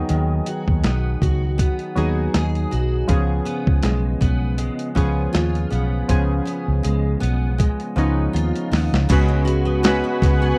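A lightly swung 80 BPM 4/4 groove from a gritty, compressed sampler-style soul drum kit with a thumpy kick and a drum fill from 6.1 to 9.1 seconds anchors this dreamy, laid-back indie and bedroom pop excerpt, where a dark, round, foam-muted fingered electric bass sits up front beneath full-bodied picked steel-string acoustic guitar with ensemble chorus and warbly pitch drift and chorused analog keys with ring modulation and a filter sweep, all in a dry, close 1970s-style studio sound moving from B6 to C#7 to C#7sus4, before a cloudy granular pad with built-in reverb blooms in at 9.7 seconds.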